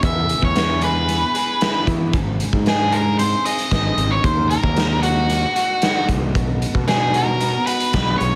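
Anthemic and bittersweet, this short cut from a longer quiet-loud alternative rock piece moves in a straight 4/4 over a chord cycle of E, Ab, Ebm and B. Up front, a dark, picked octave-fuzz lead guitar carries the melody, while a slightly broken-up, lo-fi electric guitar through a small old amp plays chorus-tinged arpeggios in the background and a growling fingered bass adds overdriven weight underneath. A raw garage drum kit with a punchy kick, medium-tuned snare and hi-hat sits forward, gritty and saturated with a rolled-off top, all within light reverb and small room ambience.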